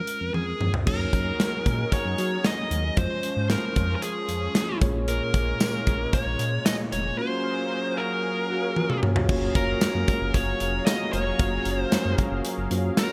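A straight 4/4 groove drives this romantic, nostalgic 1980s-style pop piece, cut from a longer work. A modern studio kit sits up front with a punchy kick, medium-tuned snare, hi-hat, tambourine, crash cymbal and toms under gated reverb, and it adds a couple of drum fills along the way. A smooth synth bass with a sawtooth-and-triangle tone, fast attack, vibrato and a moving notch holds the low end, while a mellow, clean tine electric piano plays accompaniment as though through built-in speakers. A dark, overdriven, picked electric lead guitar carries the melody on top from the very start, and from 0.9 seconds a brassy analog pad with detuned sawtooth voices, a filter swell and chorus adds bold, warbling sustained chords. Briefly from 8.5 to 9.3 seconds, a woody marimba with soft mallets and buzzing hardwood bars adds a round second line with digital delay in the background, just as the music moves into a new section. 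The bright digital production wraps the mix in moderate plate reverb, with chords moving through Dbmaj7/F, Gb6, Bbm7 and Gbmaj7.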